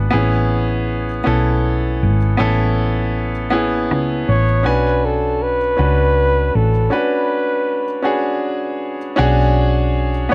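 Late-night and yearning, this slow six-eight R&B fragment in B dorian at 53 BPM pairs a clear, intimate baby grand piano, its action noise audible and its sustain long, with a dark, round, hollow-body fingered electric bass over Amaj9. A mellow, breathy flugelhorn enters at 4.3 seconds with vibrato and scooped notes in a smooth jazz-style solo, just before the harmony shifts to Bm69, with all three parts up front in light reverb and a break arriving at 6.9 seconds.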